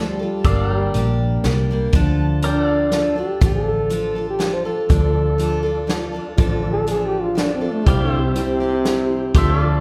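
A dark, forceful trombone carries the melody as a solo from the start, close-miked and up front, with a light vibrato and a punchy, jazz-inflected edge. Beneath it, this heartbroken, brooding honky-tonk country waltz in three sets a bright, full-bodied dreadnought acoustic guitar picking the accompaniment with audible finger squeak, while a twangy, clean pedal steel holds sustained chords with fingerpicked slide tones and volume swells. A round, foam-muted vintage electric bass anchors the low end, and a warm vintage drum kit with a punchy kick, a medium-tuned snare and a rolled-off top comes in at 0.4 seconds. At 4.9 seconds a soft, flute-like tonewheel organ slips in behind the band, colored by slow rotary speaker and chorus vibrato. The harmony moves from G minor to D minor and settles on C near the close, all set in a recital hall reverb that places the band further back in the room.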